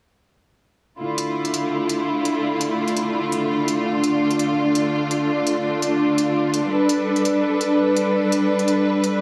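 A rich studio string section sits up front, holding smooth, bowed sustained chords with vibrato between D3 and B4 from 1.0 to 9.2 seconds. This dark, heavy excerpt of half-time drum and bass moves at 168 BPM in 4/4, set in D dorian, with the harmony resting on D minor before shifting to G at 6.7 seconds. An electronic hi-hat adds crisp, produced hats from 1.2 seconds, sitting lower in the mix and carrying its own studio reverb. The whole excerpt is heavily compressed for a radio sound, with moderate digital room reverb and a small studio ambience around the ensemble.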